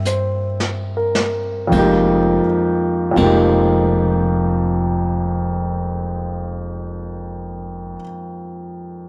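A warm, up-front grand piano carries this smoky, melancholic jazz ballad excerpt in F minor, moving at a slow 35 BPM in 4/4 with a swung feel as the harmony shifts from C7 to Fm11 at 1.7 seconds. Beneath it, a woody, thumpy pizzicato upright bass with gut strings holds the low end until 8.0 seconds, while a distant vintage brush kit with dark cymbals, a punchy kick and a rolled-off top plays a drum fill over an opening slowdown before falling silent at 3.5 seconds. Light studio reverb wraps the small group, and the piano rings on alone to 9.1 seconds.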